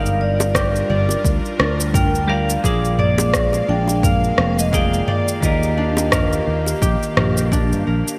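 An excerpt of sunset chillout opens at once with a dark, ringing vibraphone melody played with medium mallets and the motor off, set over fingerpicked concert harp arpeggios, a clean, compressed electric guitar and a growly, up-front fretless bass. Delay trails the vibraphone, guitar and harp, while a subtle chorus gives the sustaining bass a gentle shimmer. A soft, breathy pad with a slow attack and a warbling, detuned vintage character arrives at 0.2 seconds, its chorus-laden chords drifting beneath the harmony of Gm7, Bb7 and Ebmaj7. The groove at 86 BPM carries a light 16th-note swing, built from an up-front deep house kit of rim click, shaker and toms with gated reverb, a punchy layered electronic kick and tight, high-tuned bongos played with soft hands in the background. A lush hall reverb and bright 1980s-style digital production give the smooth, warm mood a glossy sheen.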